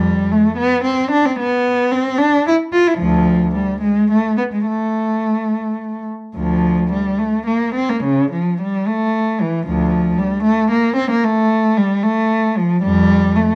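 In a rubato 6/8 at roughly 69-77 BPM counted in dotted quarters, this grave, solemn baroque-style suite movement in A minor, cut from a longer piece, presents one bowed cello up front from 0.0 to 13.6 s, ranging from D2 to F4 with soft attacks, expressive vibrato and portamento, its warm tone framed by light reverb in a dark production.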